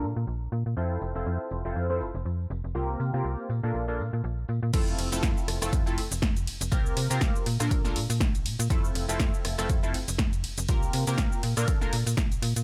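A dry, close-sounding mix opens this sunny, joyful fragment of filtered disco house, cut from a longer piece and riding a swung sixteenth-note groove. A bright, detuned polysynth comp with chorus and phaser plays funky chords through a filter sweep, cycling Fmaj7, C7sus4 and Bbmaj7, while an up-front, slap-like FM bass with a snappy, metallic attack pumps beneath it. A faint, small-room tambourine keeps time until the drop at 4.7 seconds. There a tape-warm electronic kick and a punchy analog drum machine take over, supplying snare, rim click, shaker, hi-hat, ride and crash cymbal, with the hats, cymbals and percussion filtered and pumping. The comp stops at 12.0 seconds, leaving the bass and drums to close the fragment.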